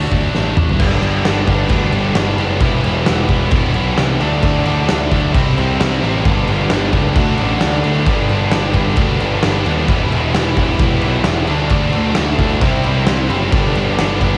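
An oversized, low-tuned acoustic drum kit dominates this dark, cathartic excerpt of quiet-loud alternative rock at 132 BPM in 4/4. Its boomy kick, medium-tuned snare, toms and dusky crash cymbals sit up front in a big, pumping room, saturated and gritty, with a short fill leading into the main section at 0.8 s. Just as prominent is a fuzz-drenched picked electric bass, direct and amped with overdrive and tube saturation. Above them, a bright high-gain distorted guitar drives the riff, joined very quietly by a heavy high-gain guitar also playing a riff. A double-tracked, overdriven electric guitar joins the riff in the background from 0.8 s. A clean, twangy fingered guitar plays brief arpeggios with subtle chorus over the opening D chord before it drops out, while a mellow, reedy accordion holds very quiet sustained chords with slow beating over a cycle of Gadd9, Emadd9, Dadd9 and C. The dry home cassette recording gives the whole a lo-fi, saturated grain.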